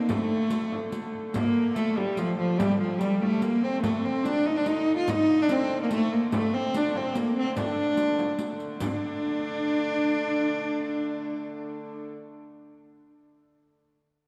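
A dark production steeped in wet church reverb frames this mysterious, driving medieval dance, cut from a longer piece, in D phrygian at 145 BPM in a straight 3/4. Up front and close, a woody, bowed and fretted viola da gamba carries the melody with light vibrato and a ringing tone. A second viola da gamba sits in the background on a floating second line, pure and airy with a soft attack. Beneath them a hurdy-gurdy holds a nasal, reedy drone. A small, bright frame drum and a jingling riq, both compressed and saturated, drive the dance until 9.0 s, after which the two bowed strings and the drone carry on alone in the reverberant space.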